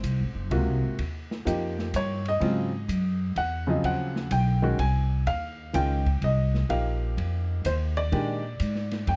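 Jazz piano trio swinging in 3/4 at 126 BPM in E-flat mixolydian, a warm, swinging clip of 9.2 seconds cut from a longer piece and moving from Ab7 through Eb and Eb7 to Bb7. An intimate baby grand carries the melody up front, natural and short in sustain with its action noise audible, while a woody, thumpy pizzicato upright bass on gut strings sits equally close beneath it. A smooth acoustic kit with dark cymbals, a medium-tuned snare and a punchy kick plays quieter in a small room, all wrapped in light reverb and a dusky production with a rolled-off top.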